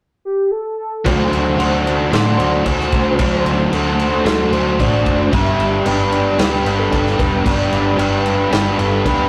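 A rough, tube-saturated rehearsal-room sound with a wet ambience carries this hazy, blissful shoegaze and dream pop excerpt at 113 BPM in D mixolydian, where a velvety, detuned synth lead with chorus and vibrato sings the melody from 0.2 seconds, a biting, double-tracked overdriven guitar riff sits up front from 1.0 seconds, and at 1.1 seconds a dark, round, foam-muted fingered bass and a loose indie drum kit with a tight kick and rolled-off top join as the harmony moves from D5 to G.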